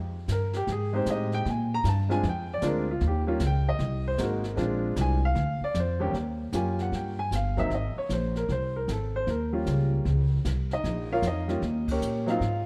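A swung 4/4 groove carries this playful, sophisticated jazz piano trio fragment, cut from a longer piece, with a woody, thumpy upright bass sounding up front from the very start. The baby grand piano enters at 0.3 seconds with an open, long-sustaining tone and takes a solo through the first half, while the brushed drum kit, with its dark cymbals, medium-tuned snare and boomy kick, sits softly in a small, natural room. Light reverb and a dark production frame the sound, and the band hits a shared accent at 11.8 seconds.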